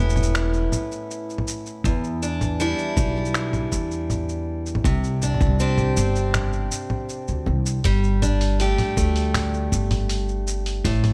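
Hopeful and pastoral, this folktronica excerpt moves at 80 BPM in a straight 4/4, set in G major with tuning at A4 = 439 Hz. A bright, boxy parlour steel-string acoustic guitar plays picked arpeggios up front, its fresh strings roughened by vintage 12-bit sampler grit and trailed by a digital delay. Beneath it, a woody, dark upright bass played pizzicato sits close and present, carrying the low end through the whole 11.1 seconds. A pitched-down, muffled lo-fi drum kit of congas, finger snaps, hi-hat and shaker enters at 0.1 seconds with studio reverb, joined at 1.8 seconds by a compressed, thumpy electronic kick. The harmony drifts from Aadd9 to Em7, Csus2 and Gsus2, all held in a small room ambience.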